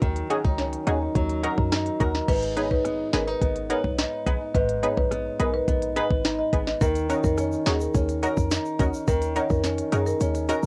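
Fingerpicked flamenco guitar arpeggios with tape echo open this sultry, tough dancehall excerpt at 106 BPM, set over a tight sine 808-style bass, an up-front electronic afro-pop kit with a knocking kick, sharp snare and smooth hats, and bright, detuned sawtooth chord stabs with chorus and sidechain pumping, while a woody, dry marimba melody enters at 2.3 s, a soft egg shaker joins in the background at 6.8 s, and the kick mutes at 10.2 s, all moving between Ebm7 and Abm with the warm character of a home cassette recording and light reverb.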